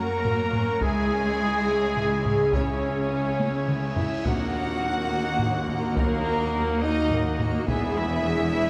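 Cinematic, epic orchestral film score in 6/8 at 70 BPM, pitched in Eb phrygian with a relentless, heroic mood, cut from a longer piece. A clear, intense violin section carries the vibrato-rich melody at a distance, while a second violin section with a smooth top sits in the background, a close, very quiet viola section fills the accompaniment, and lush bowed cellos and double basses hold down the bass. A mellow, vintage French horn section sustains chords alongside a soft reed pipe organ using an oboe stop with baroque voicing and chiff, and a solo trumpet adds stabs until 3.9 s. Hard-stick taiko drums, compressed and saturated, drive the piece from 0.2 s with a fill leading into a full-band accent at 4.3 s, while a close and dry cymbal swell and tam-tam shimmer in the background. An airy, bright flute section enters at 4.0 s with a second line, as the harmony moves from Gb and Dbm to Ebm and finally E, all set in a moderate concert hall reverb.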